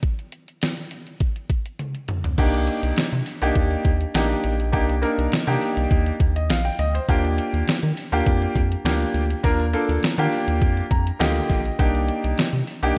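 Early-eighties boogie funk in C minor at 102 BPM, slick and danceable, opens with a crisp, overdriven 8-bit drum machine alone, its thumpy kick, fat snare, hi-hat, toms and crash cymbal rolling into a fill at 1.8 seconds, before a rubbery, bouncy square bass and a clear, up-front baby grand piano with slapback echo enter at 2.4 seconds over Cm9 and Ebmaj9 chords, the piano adding a fill from 10.6 seconds, all set in a big arena-like digital reverb in this brief cut from a longer piece.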